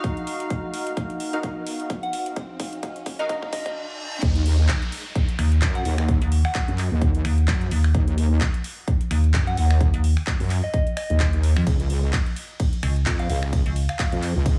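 A metallic, overdriven FM bass and a heavy, saturated wobble bass drive the drop at 4.2 seconds in this aggressive, gritty bass house cut at 129 BPM in Eb minor, after a build-up where an airy, evolving pad, a bold orchestra-hit-like synth stab with dub echo, a riser and reverse cymbal sit over a punchy kick and a big-room kit of snaps, claps, ride and metallic hats, while a soft, pure synth bell carries the melody with chorus and phaser.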